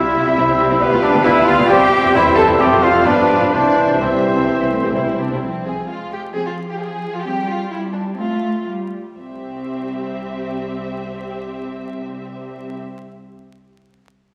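A full symphony orchestra opens this lively, spirited classical-period movement in C major at a quick 118-135 BPM, with distant, lush violins carrying the melody over close, portamento-laced chamber violins, clear oboe, pure silver flute, soft-edged clarinet, punchy bassoon, very quiet French horns, mellow trumpet stabs, focused violas, smooth-topped cellos and even double basses, before the winds, brass and double basses drop away by 5.4 seconds while the tempo slows between 4.5 and 9.2 seconds, leaving the strings to carry on in a spacious scoring-stage reverb under a veil of vinyl crackle.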